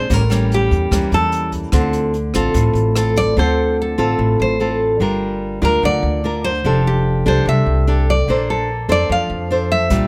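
Two fingerpicked, up-front classical nylon-string guitars open this smooth, wistful bossa nova excerpt in D minor at 147 BPM, one carrying a bright, fresh-strung melody with audible finger squeak over the other's warm chording through A7b9, Dm7, Gm7, F69 and Bbmaj9, while a woody pizzicato upright bass holds the low end throughout and a brushed jazz kit with boomy kick, hi-hat and rim click plays from 0.1 to 3.3 seconds before returning briefly at 9.9 seconds, all in a dry studio sound.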